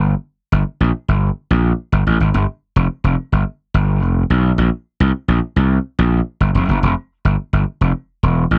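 A straight 4/4 funk groove with a danceable, late-night mood is carried entirely by a solo electric slap bass, growly and punchy with overdriven grit, sitting up front in a dry, close 1970s-style studio sound touched by light reverb across this short cut from a longer piece.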